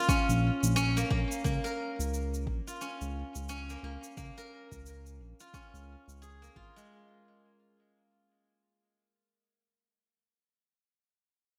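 A bright, silvery steel-string zither, played with fingerpicks and ringing through a delay, spins arpeggios up front in this mystical, meditative organic downtempo piece over a Bbm7 chord with a swung sixteenth-note feel. At 0.1 s a deep, overdriven electronic kick drum and an overdriven cabasa, both re-recorded in a small room, enter, and at 0.3 s a smooth, evolving synth bass of sawtooth and square waves joins them with vibrato and a filter sweep. The kick, cabasa and bass stop by 6.9 s as the fade-out ends, leaving the zither alone until 9.6 s inside a lush hall reverb and 1980s-style digital production.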